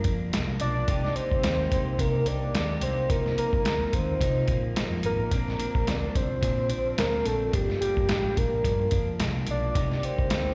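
Hazy and nostalgic, this short excerpt of indie bedroom pop moves at 108 BPM in Bb major with a light swing on the sixteenths, cycling through Gm7, Cm7, F7sus4/C and Bbadd9. A compressed, pitched-down sampler-style drum kit sits up front with a thumpy kick, a medium-tuned snare and hi-hat, its muffled sound re-recorded in a large room. Underneath, a hollow-body short-scale electric bass is picked with a dark, round, punchy tone, while an electric guitar through a small old amp adds twangy, slightly broken-up accompaniment coloured by analog chorus, warbly pitch drift and slapback echo. From 0.6 seconds a soft octave-layered synth lead carries the melody, blending triangle, sawtooth and sine waves with a sub octave for a full, sustained voice with vibrato, subtle chorus and its own slapback echo. The whole performance sounds like a live gig heard through a venue's PA, wrapped in the lingering reverb of a recital hall and a light digital ambience.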